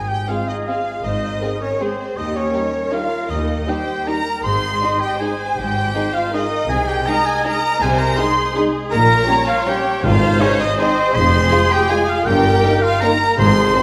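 A lush violin section sings the melody of this elegant, sweeping orchestral passage in a lilting three with a flexible, rubato feel, over bowed cellos and double basses, while a very quiet, airy flute ensemble and a solo oboe trace second lines and a dark trumpet section adds stabs. From 0.3 seconds, intense violas fill in the accompaniment, a softer second violin line joins, and a mellow French horn section holds sustained chords. Round timpani struck with soft mallets sound in the background at 10.0 and 13.4 seconds, all in a reverberant scoring-stage space.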